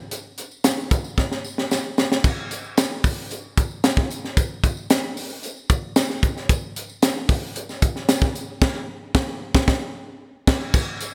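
A straight, steady 4/4 pop pulse drives this short, slick and bittersweet fragment cut from a longer piece. A crisp fusion drum kit sits up front, its high-tuned snare and tight kick joined by hi-hat and crash cymbal, with a pumping small-room sound around the acoustic shells. A jingly tambourine plays in the background throughout, its warm, live-room tone sitting beneath the kit. A drum fill at 1.2 seconds leads into the main body of the groove, and a band accent at 8.6 seconds marks a moment near the close. Moderate lush hall reverb and a touch of small room ambience frame the bright, 1980s-style digital production.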